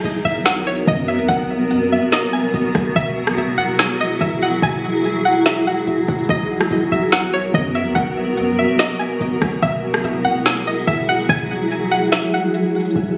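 Blissful and dreamy, this atmospheric cloud-rap hip hop excerpt moves at a half-time feel in 4/4 over a Bmaj7 to Eadd9 progression, with a cloudy, blurred granular pad carrying sustained chords up front through its own built-in reverb and sidechain pumping, while a deep, dark sine 808 bass holds long decaying notes underneath. A bright, twangy, string-like resonator pluck carries the melody with chorus, phaser and delay until 12.5 seconds, and an overdriven, up-front R&B kit of soft kick, woody snare, smooth hi-hats and rim clicks drives the groove, its kick dropping out at 12.1 seconds. The whole piece sits in a light studio reverb and was recorded on a phone in the room.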